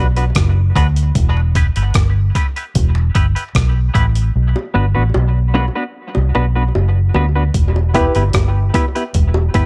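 An echo-heavy mix bathed in digital ambience gives this short cut from a longer dub reggae piece a meditative, heavy atmosphere in a straight 4/4. Up front, a dark, foam-muted electric bass with a round, punchy, amped tone anchors the groove. A gritty, compressed sampler-style breakbeat kit with a thumpy kick, tape-warm hi-hat and rim click sits just as close. A hollow-body electric guitar plays clean, fingered accompaniment with subtle chorus, a high-pass filter and tape echo, while low-tuned, band-limited bongos under soft hands add vintage acoustic colour through their own filtering and echo. The harmony moves between Bm and Em, with one part falling silent from 4.3 to 7.5 seconds. Near the close, at 7.9 seconds, a clear but worn concert grand drops a brief, short-sustained stab that trails into tape echo.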